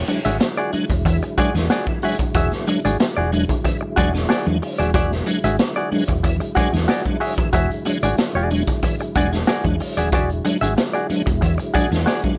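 A mellow, percussive tonewheel organ opens at 0.0 seconds with dark sustained chords on E9, its fast rotary speaker and key click sitting in the background, before this strutting 93 BPM funk groove in E mixolydian kicks in. A gritty, saturated garage drum kit with a punchy kick and a pumping small-room sound sits up front beside a clean, compressed semi-hollow guitar played fingered with plate reverb, while a second, piping and scooped organ with a slow rotary speaker adds stabs. From 0.3 seconds a round, amped hollow-body bass played fingered anchors the low end under light reverb in this funky, straight-feel cut from a longer piece.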